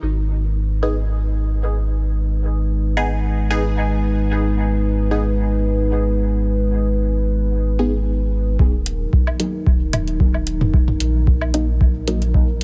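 A lightly swung 4/4 groove in deep, hypnotic dub techno, this piece spends its opening stretch floating on a pumping sidechain pulse before the deep, up-front kick drum arrives at 8.6 s. A dark, detuned analog pad holds sustained chords through a lush chorus, its slow-attack, wave-folded tone moving under a filter sweep across the first part, while a pure sine sub bass sits clean and smooth beneath it. From 0.8 s, a muted, filtered dub chord stab adds short, plucky sawtooth-and-pulse hits colored by phaser and trailing dub echo. Once the kick lands, the harmony shifts from Abm to Ebm, metallic analog hi-hats follow with a low-pass filtered edge, and at 9.3 s layered, tape-warm electronic woodblock and toms join, pumping and echoing in dub fashion. The drums carry a small-room character, the mix stays fairly dry overall, and the passage is cut from a longer piece.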